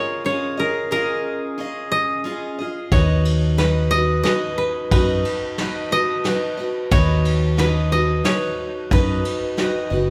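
A koto and a picked steel-string acoustic guitar open together, the koto carrying a woody, fingerpicked melody while the guitar's bright, fresh-stringed accompaniment rings over a C#add9 chord. This is a pastoral, nostalgic acoustic folk piece in 3/4 at 90 BPM, set in B lydian and cut from a longer performance. At 2.9 seconds the harmony moves to B/D#, and a fingered electric bass enters with a dark, round tone, joined by a soft brush drum kit of kick, snare and ride cymbal whose sound has a rolled-off top. The drums drop out at 9.7 seconds, leaving the koto, guitar and bass to carry the final moments. The instruments sit up front in a moderate recital hall reverb, giving the small ensemble the air of a church or concert hall.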